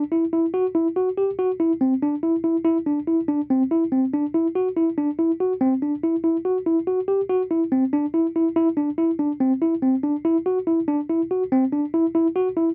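Tense and driving, this short progressive instrumental excerpt at 142 BPM in 7/4 features a clean tine electric piano playing alone, up front through its built-in speakers, in a dry, close 1970s-style studio recording with a moderate booth ambience.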